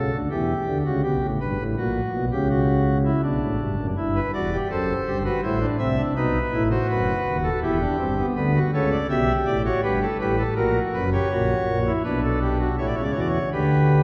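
A nasal cornet stop on pipe organ sits up front and plays alone through this contemplative, serious fragment of a baroque-style three-part fugue in 3/4 at 82 BPM, its romantic voicing spanning D#1 to E5 and moving from Bm through Gadd9, F#7/A# and Em before turning to A7 at 12.8 s, all bathed in a wet church reverb.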